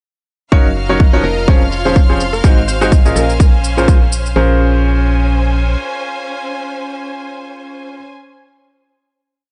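A dry, close studio sound with a softened top end frames this short, energetic and soulful piano house piece, which moves through a breakdown before settling onto a final chord at 4.4 seconds. Up front, a bright, woody upright piano plays a riff with delay over a hollow, organ-like FM bass and a punchy, overdriven electronic kick in four-on-the-floor, joined by a layered shaker. A clear violin section holds a high note and a lush string section shifts its chords slowly, both pumping to the sidechain along with the piano and bass. Meanwhile, a catchy, detuned unison lead adds mellow background phrases from 1.2 seconds. Once the bass drops out near 5.8 seconds, the piano and strings ring on together until about 8 seconds.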